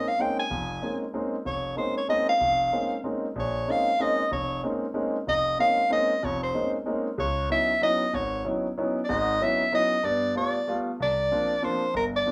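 A warm soprano saxophone leads this searching, intense jazz waltz at 189 BPM with a light swing, its vibrato, scooped notes and smooth top carrying an up-front solo melody over a concert grand piano whose deep bass and natural tone fill the accompaniment, the two heard together in a small, reverberant room as the harmony moves from Bbm11 through Dbm11 and G9 to C9sus4 in this 12.3-second cut from a longer piece.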